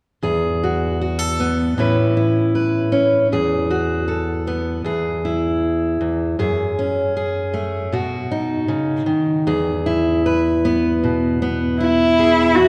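Pastoral and nostalgic, this short excerpt of acoustic folk for a duo or small band moves at an unhurried 78 BPM in a straight 4/4, centred in E major with tuning at A4 = 442 Hz. A fingerpicked steel-string dreadnought guitar carries the accompaniment from 0.2 seconds, its fresh strings giving a full-bodied, warm tone that spans from low E2 up to B4. The harmony drifts through Eadd9, Aadd9, E, F#madd9 and B before settling back on E, lending the open, suspended colour of the added ninths. At 11.8 seconds a single bowed cello takes up the melody, brief but expressive, with vibrato and portamento in a narrow range from E4 to F#4. The recording sits in a church or concert hall, bathed in a wet reverb that lingers for about 1.9 seconds and softens the whole into a reflective glow.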